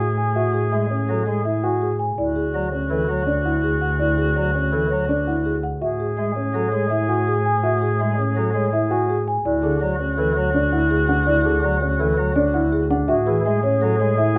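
Light reverb gives this short excerpt of bright, propulsive minimalist classical music an airy space, set in A major at 165 BPM in a straight 5/4, with tuning slightly below standard at A4 = 435 Hz. A woody, round marimba with soft mallets carries the melody from a mid-forward position, while a distant, mellow oboe with vibrato traces a second line, and a dark, vintage-sounding baby grand piano plays intimate arpeggios, its action noise audible. A rich, focused bowed double bass anchors the low end, and from 0.7 s a pipe organ on a nasal cornet stop with baroque voicing and a touch of chiff adds accompaniment, all circling between Amaj7 and Dmaj9.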